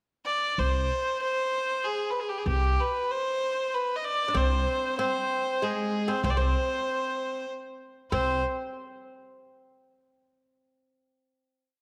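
Longing and melancholic, this complete Arabic maqam ensemble piece moves at 96 BPM in a straight 3/4, opening with a short pickup before a single clear, nasal violin enters at 0.3 seconds with an ornamented modal melody, lightly vibratoed with an airy bow and touched by a slapback echo. The plucked upright bass joins at 0.6 seconds with a thumpy, steel-strung root and fifth line. At 4.3 seconds the fretless oud comes in softer, woody and deep, doubling the melody with its own ornaments, before everything settles on a final note from 8.1 seconds inside a wet echo chamber with a long reverb tail.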